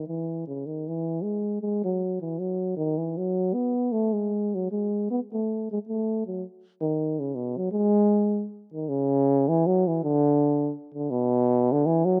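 A lone euphonium opens this festive, jolly alpine folk excerpt, playing solo from the first moment to 12.2 seconds at a lively 158 BPM in 3/4. The time feels loosely swung and rubato, giving the waltz-like lilt an easy, unhurried elasticity. The euphonium's tone is dark with a smooth top and a light vibrato, delivered in a classical style and placed up front. It moves between B2 and B3, and a slapback echo trails its line. The sound is dry and open-air, with little reverb, and the music shifts to a new section at 8.9 seconds before the fragment is cut off.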